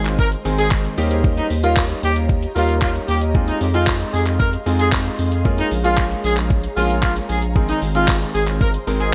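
A bright 1980s-style digital sheen with light reverb frames this confident, energetic dance-pop excerpt at 114 BPM, where a punchy horn section carries the melody with light vibrato and delay over a clear, intimate grand piano, a deep saturated sub bass and an ethereal detuned pad, both pumping to the sidechain, and a gritty sampler-style soul kit of thumpy kick, handclaps, hi-hat and shaker in gated reverb, entering at 0.1 s, as the chords move from Ab through Eb7, Fm7 and Bbm7 back to Ab.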